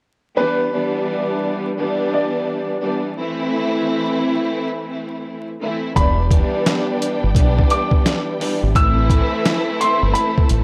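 A dry, gritty hardware sound with vinyl crackle frames this short boom-bap hip-hop passage, cut from a longer piece and moving at 86 BPM in E minor with a swung sixteenth-note feel. From 0.4 seconds a woody, vintage-toned upright piano carries the melody through tape echo, high in its register, while a bowed string ensemble with vibrato holds a lower accompaniment coloured by cassette tape, the harmony rocking between Em7 and Am. At 6.0 seconds the groove arrives: a compressed, pitched-down sampler-style kit with a thumpy kick, medium-tuned snare and hi-hat sits up front beside a deep, round, punchy fingered electric bass with transformer saturation. At the same point a second, lush string section with portamento and expressive vibrato enters in the background, sustaining higher chords behind the piano. The mood is tough yet reflective, pairing a punchy rhythm section with smooth, warm strings and keys.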